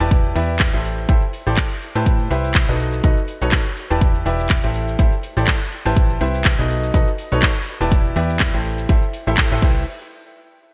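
A swung 4/4 house groove drives this joyful, uplifting piano house cut from a longer piece. A punchy electronic kick sits beside an up-front house kit of crash, handclaps, metallic hi-hats and shaker, both with a tape-warm, small-room character and the kit carrying gated reverb, while a plucky, funky analog bass with a sawtooth edge and moving notch pumps against the sidechain. Over a looping Em7, Am7, Cmaj7, B7 progression, a brilliant, open baby grand piano plays a riff through pumping and delay, all wrapped in light reverb and bright 1980s-style digital production.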